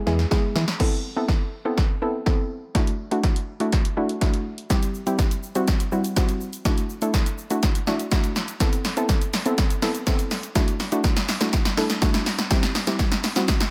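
Driving and bittersweet, this dance-pop excerpt moves at 123 BPM in A dorian, tuned to A4 = 438 Hz, with an up-front analog drum machine sounding off a drum fill from the start before building steadily through the rest of the clip with punchy kick and snare, hi-hat, shaker and crash cymbal. A soft, round, detuned pluck carries the chords (Amadd9, Dadd9 and C) with chorus, sidechain pumping and a filter sweep, while a dark FM bass appears only briefly between 0.1 and 0.6 s. Light reverb lends the mix a digital ambience.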